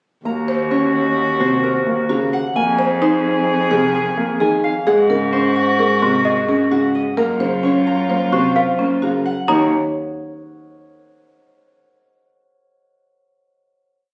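A clear, distant soprano saxophone with light vibrato swells on held notes over the long bowed lines of a rich solo cello from 0.2 s, opening a meditative yet urgent minimalist classical pattern piece at 130 BPM in 5/4 in Eb dorian, where a warm fingerpicked concert harp rings a repeated short melodic cell above a dark, mellow grand piano and a woody, buzzing marimba spinning dry arpeggios, joined at 6.0 s by a bell-like, slightly out-of-tune celesta, before the harp lets the closing Eb minor chord ring on to 11.8 s, all captured on a phone in a room with moderate studio reverb.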